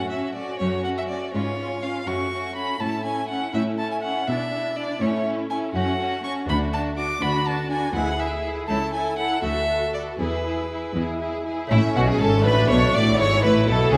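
This lively, brilliant baroque-style concerto movement in 6/8, cut from a longer piece, opens with the strings and lute together, moving at 81 dotted-quarter beats per minute with a straight feel. A single bowed violin, focused and up front yet slightly distant, carries the melody with vibrato, joined by a very quiet chamber violin section on the melody, while a rich studio violin section plays a second line. A fingerpicked lute with gut double strings, some doubled at the octave, sits delicately in the background, and the viola section fills the accompaniment with a smooth-topped tone. The symphonic cello section holds the bass, even and rich, and an expressive, soft-attacked double bass section joins beneath it at 11.7 s as a new section begins. The music starts in F# minor and moves to A major from 5.7 s, all set in a moderate concert hall reverb.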